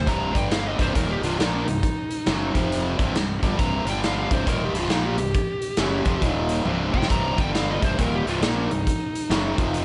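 A double-tracked, distorted electric guitar riff sits up front in this heavy, gritty fragment of blues rock power-trio and southern rock, set in C minor at 137 BPM with a swung eighth-note feel in 4/4. Beside it, a raw garage drum kit pounds out a punchy kick, medium-tuned snare, hi-hat and toms, its saturated sound filling a bright stone room that pumps under a rolled-off top, with a short fill at 6.7 seconds. A fingered electric bass, thick with fuzz and growl, anchors the low end. A dark, driven slide guitar carries the melody a step back in the mix, bathed in plate reverb. The harmony cycles through C and G power chords into C minor, with F and Eb power chords along the way, all framed by light reverb and a dulled upper register.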